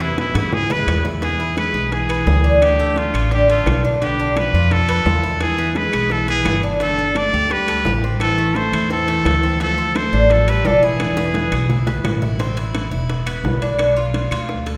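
A wet concert-hall reverb surrounds this sultry, nostalgic passage of Cuban son and guajira, cut from a longer piece and moving briskly at 172 BPM in a straight 4/4. Up front, a brilliant, nasal trumpet with a straight mute carries the jazz-style melody, while a dark French horn with a smooth top plays a classical-style second line beneath it. Both horns stop around 12 seconds. The Cuban tres picks bright, metallic arpeggios on its double strings, some of them octave-doubled, and the woody, thumpy pizzicato of the upright bass sits prominently in the mix. In the background, round, low-tuned bongos under soft hands join ringing metal-shell timbales and very quiet claves. Drum fills mark the opening and the stretch from 11.0 to 12.4 seconds, as the harmony moves from E through Dm, Bdim, E, Gsus2, Am and Dm7 back to E, then passes through Am and E5 before ending on Bdim.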